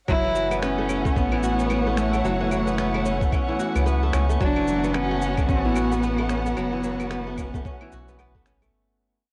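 Mystical and warm, this short organic downtempo piece in F# minor moves at 111 BPM with a swung sixteenth-note feel, resting on a single F#m7 chord throughout. A dark, bowed cello carries a motif-based melody of arched phrases with vibrato and portamento, touched by tape echo and shimmer reverb, while a lush studio string section holds sustained chords with a sidechain pump. Up front, a bright, crisp kora rings out a repeating sixteen-step arpeggio through analog delay, and a round, deep analog bass plays long gliding notes beneath. A soft, thumpy electronic kick pairs with a gritty, sampler-style beat of claves, cabasa and finger snaps, and from 1.0 seconds a glassy texture of drifting overtones holds a high note in the background. The home cassette recording carries faint mains hum and a moderate spring reverb, and the piece fades out from 5.8 seconds to 8.7 seconds.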